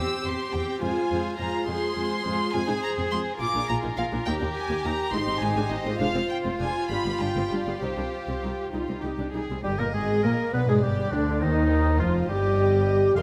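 Sul tasto violins carry the melody with light vibrato and a soft attack in this dramatic, restless classical-period movement in 6/8 with rubato, joined by a second violin line, somber violas, warm cellos and a clear, pure double bass section, all bowed. At 9.6 seconds the winds enter: a bright, airy flute ensemble, very quiet, and a vintage-toned oboe take up second lines, while a dark bassoon adds accompaniment and a mellow French horn section holds sustained chords in the background. A moderate stage reverb lends the chamber-sized strings space in this brief cut from a longer work.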